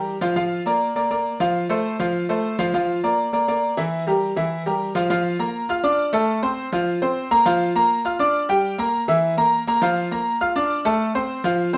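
Sunny and danceable, this short latin cut from a longer piece features a lone concert grand piano playing solo from start to finish across its 11.8 seconds, moving through chords like Bb/F, Edim, Gm7 and Bbmaj7/F. The piano sounds brilliant yet worn, with deep bass, audible action noise and an intimate, up-front presence touched by a slapback echo. Wet studio reverb places the listener further back in the room, and a second section begins at 5.1 seconds.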